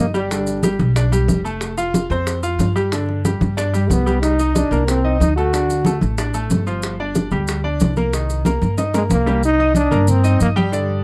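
The dry, close sound of a 1970s-style studio frames this passionate, danceable salsa excerpt, which is cut from a longer piece. A bright, brilliant concert grand piano sits up front with deep bass, accompanying in C minor. Beside it, a woody, thumpy upright bass plucks on gut strings. Congas with a thick, damped skin stay in the background, while tight, high-tuned vintage bongos and grainy, mellow maracas add color. A warm solo trombone with light vibrato, scooped notes and a smooth top carries the melody, returning at 3.7 seconds and again at 9.0 seconds. A fill at 8.5 seconds leads into a fresh pass through the main section.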